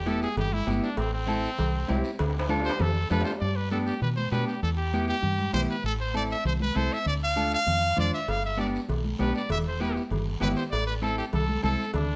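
Passionate and danceable, this cumbia at 197 BPM opens with a brilliant, punchy trumpet solo full of vibrato, carrying the melody up front over a round, foam-muted, deep dub fingered electric bass and a dark, clean, picked electric guitar. Ringing metal-shell cowbell and timbales join early, and a drum fill arrives at 2.2 seconds before they drop out at 3.4 seconds, then they return at 8.3 seconds. Throughout, thick-skinned vintage congas and a raspy, distant guiro sit in the background while the harmony cycles through Em, Am, Dm and G in a moderate large-studio reverb.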